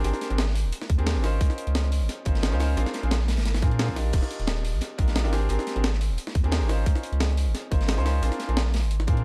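A deep, thick saturated sub bass sits up front in this uplifting, lush liquid drum and bass passage at 176 BPM, holding sustained notes under a progression that moves from Abmaj9#11 through Dbmaj13 and Bb9 to Ebmaj9. A bright, brilliant grand piano with tape echo plays the accompaniment, while a gritty, pitched-up sampler-style breakbeat kit with crash, hi-hat and snare runs alongside a darker, crunchy breakbeat kit in the background, its hats, snare and room high-pass filtered. A tight, layered electronic kick joins up front at 0.9 s, and the whole production sits in a small room with a dark, warm character.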